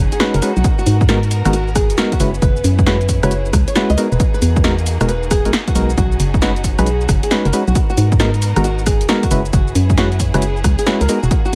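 A swung two-step beat at 135 BPM drives this bouncy, sunny UK garage excerpt, with a punchy analog drum machine supplying hi-hat, rim click, shaker and snare over a tape-warm electronic kick that enters at 0.6 seconds. An up-front, hollow FM bass with an organ-like, decaying tone and dark percussive organ stabs, treated with chorus and dub echo, carry the harmony through a B6/9, G#m9, F#9sus4 and Emaj9#11 cycle. A fingerpicked acoustic flamenco guitar melody trails dub echo above them, while a lush bowed violin section sustains expressive chords with vibrato and portamento in the background, pumping against the beat, all in a dry mix coated in vinyl crackle.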